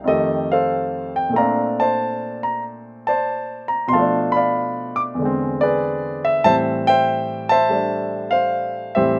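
Solo jazz piano in A minor, moody and smoky, moving at 94 BPM in 4/4 with a swung eighth-note feel and a loose, rubato sense of time. A single grand piano carries the whole piece, spanning from E2 up to D6, its tone warm, present and polished with a short sustain that keeps each chord clean and up front. The harmony drifts from F9 to Bbmaj9, then through Bm7b5 and E7b13 before settling on Am7 at 6.5 seconds. The sound is dry and close, with little reverb and an open-air quality lacking any room ambience. This short cut from a longer performance lasts just over nine seconds.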